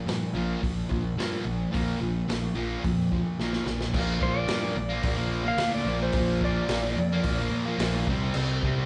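Played live in one room with moderate large-studio reverb and a dull, rolled-off top, this raw, swaggering garage rock clip sets a bright, double-tracked fuzz guitar riff and a punchy, overdriven fuzz bass over a gritty, saturated breakbeat kit with dark cymbals and a tight kick, as a drum fill at 3.4 seconds leads into the second section and a clean, twangy, compressed slide lap steel melody arrives at 4.2 seconds.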